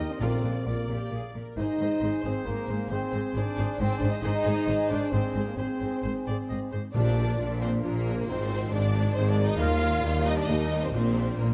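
Triumphant and soaring, this cinematic cue from a heroic adventure film score moves at 134 BPM in a straight 3/4, cut from a longer piece. A dark, distant violin section carries the lush, vibrato-rich melody, while a second, warm violin section with a soft attack and a smooth top, a present and bright solo oboe, a dark clarinet set back in the room, and an airy, hollow flute ensemble weave supporting lines around it. Beneath them, a very quiet viola section provides even accompaniment, a tight French horn section holds sustained chords, and a focused double bass section joins a cello section, heard with portamento in the background, to anchor the low end. Timpani strikes land at 0.2 s and again at 6.9 s, when a mellow tuba also enters in the background as the oboe drops out and the harmony moves from Bb and Ab toward an Ebadd9 before settling back on Bb. The moderate scoring-stage reverb gives the whole a dark, warm production.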